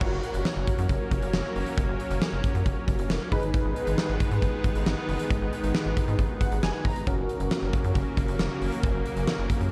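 A straight 4/4 beat drives this nostalgic, wistful synth-pop excerpt, carried by a huge, up-front arena drum kit with a punchy kick, fat snare, hi-hat and bright crash cymbals ringing in a big room. Beneath it, a rubbery, hollow square-wave bass bounces along with a resonant filter pluck, sitting low in the register. Mellow, round analog keys built from detuned sawtooth tones with chorus and a filter sweep decay over the chords, then add a short fill from 6.2 to 7.1 seconds. A lush, thick unison pad with chorus holds sustained chords underneath, swelling in slowly and lingering on a long release. The harmony moves from F# to G#m at 3.3 seconds and returns to F# at 7.1, all set in light reverb with a dark, warm production.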